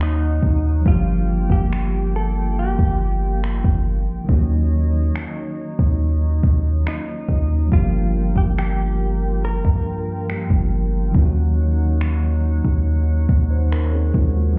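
Heard muffled as if through a wall in club reverb, this late-night, sensual contemporary R&B excerpt opens at once with a tape-warm electronic kit of soft kick and finger snaps, a deep sine 808-style bass up front, a clean tine electric piano through built-in speakers, a hollow, flute-like pad with chorus and sidechain pumping, and a compressed, picked clean electric guitar melody with analog chorus and delay that stops at 10.3 s, while the harmony moves between Ebm7 and Gm7.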